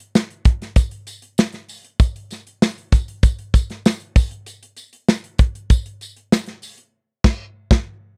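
A straight 4/4 groove at 97 BPM drives this short pop fragment, cut from a longer piece and carried by an up-front acoustic drum kit of kick, snare, hi-hat and crash, with its tight kick and medium-tuned snare heard in a small room. A jingly tambourine sits close yet in the background from 0.2 to 6.8 seconds, and a band accent lands at 6.9 seconds. The dry, close 1970s-style studio sound gives the passage a slick, bittersweet mood.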